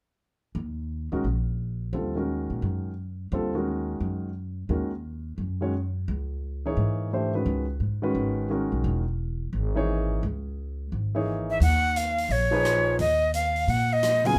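Searching and intense, this fast swinging modal jazz excerpt opens with woody, growly pizzicato upright bass at 0.5 seconds and a warm, short-sustained baby grand piano comping over minor eleventh chords, and both keep playing as a breathy, bright flute with reedy chiff and vibrato takes the melody at 11.5 seconds, joined by soft hi-hat and rim clicks from a big-room drum kit in a moderate club reverb.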